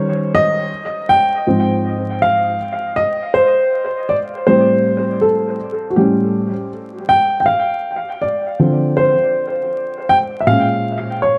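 A dark upright piano plays alone from 0.0 to 11.4 seconds in this nocturnal, mellow hip hop passage cut from a longer piece, its woody, intimate tone sitting up front with audible action noise, short sustain and a dub echo. The swung 4/4 feel moves through chords such as Eb7, Ab6, Am7 and A7 before a new section begins at 7.5 seconds on Dm7, reaching Bbm7 at 10.5 seconds. A moderate spring reverb, an echo-heavy mix and vinyl crackle surround the piano's smooth, vintage sound.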